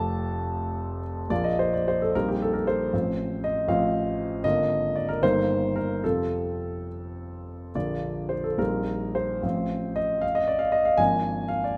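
Intimate and up front in a moderate stone-room reverb, with audible action noise and long sustain, a grand piano plays alone through this lyrical, passionate romantic character piece in 6/8 with free rubato, ranging from deep bass to upper register over the 11.8 seconds of this fragment cut from a longer work.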